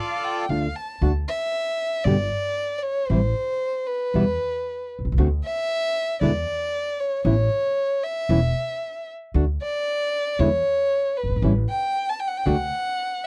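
A dry, close studio sound in a 1970s style frames this sultry, dramatic tango fragment, moving at 115 BPM with a rubato feel. A reedy, bright bandoneon carries the melody only briefly at the start, while a bowed violin with vibrato, soft attack and portamento plays a second line before taking an expressive solo from 1.0 to 13.3 seconds. Underneath, a classical nylon-string guitar, thumb-plucked with audible finger squeak, and a woody, growly pizzicato upright bass enter at 0.5 seconds as the chords travel from Dm to a closing D.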